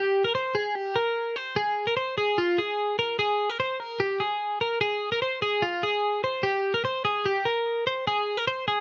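Wistful and bittersweet, this indie pop excerpt in F minor at 148 BPM features a lone twelve-string electric guitar, bright, clean and twangy, picked up front with light reverb across its 8.8 seconds.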